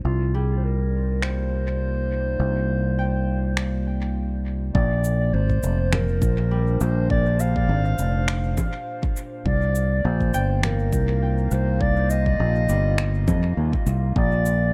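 Ambient dub in C minor at 102 BPM, with a lightly swung sixteenth-note feel and a deep, meditative mood, heard as a cut from a longer piece. A warbling, nostalgic pad sits in the background with slow-attack chords that ring on through chorus and reverb, while a round, punchy fingered electric bass sits up front with a dark, amped tone. A dark, distant clarinet carries the solo melody in a classical style, trailed by dub echo, as a bright concert harp rings out fingerpicked arpeggios softly behind it through analog delay. Tape-warm electronic finger snaps, cabasa and congas arrive at 1.2 seconds with their own dub echo, and a deep electronic kick drum joins at 4.7 seconds as the harmony moves from Cm11 to Bbadd9. The echo-heavy digital ambience wraps the whole mix in a deep, echoing space.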